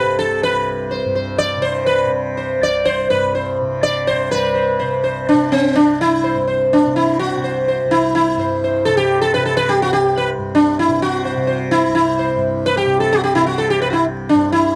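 In a straight four-beat pulse that speeds up, this meditative, radiant Hindustani classical fragment, cut from a longer performance, sets a bright, buzzing sitar up front with sympathetic strings ringing over a softly plucked, shimmering tanpura drone sitting well beneath it, moving into a new section at 4.3 seconds, in a dry, close 1970s-style studio sound with light reverb and vinyl crackle.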